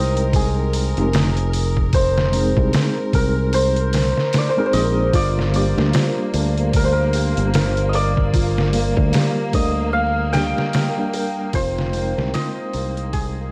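A swung, sampler-style trip hop groove of thumpy kick, medium-tuned snare and hi-hat sits under a growly, up-front fingered electric bass with transformer saturation, while a bright, shimmering santur carries the melancholic, dark melody through dub echo over a mellow tine electric piano with tremolo and smooth, bowed violin section chords; a muted, boxy upright piano with audible action noise, 12-bit sampler grit and dub echo adds background arpeggios from 5.1 seconds, and the dry, hardware-recorded sound, flecked with vinyl crackle, fades out from 9.4 seconds in this cut from a longer piece.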